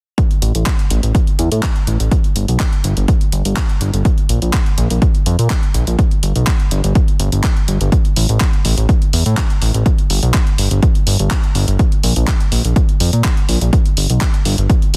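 A straight 4/4 groove at 124 BPM drives this emotional, expansive progressive house excerpt, cut from a longer piece. An overdriven, punchy electronic kick sits up front from 0.2 seconds, layered and re-recorded in a large room. Alongside it, a deep house drum kit of handclaps and hi-hat carries a tape-warm tone from a small room, with sidechain pumping on the hats. From 0.4 seconds a fat analog bass enters, thick and detuned with a sawtooth edge, a fast attack, sustained notes and a filter sweep, pumping against the sidechain and ranging from G1 to Bb2. The sound is dry, with little reverb, and the dense, heavily limited modern master keeps the kick pressing forward until 14.8 seconds and the bass until the end at 15.0 seconds.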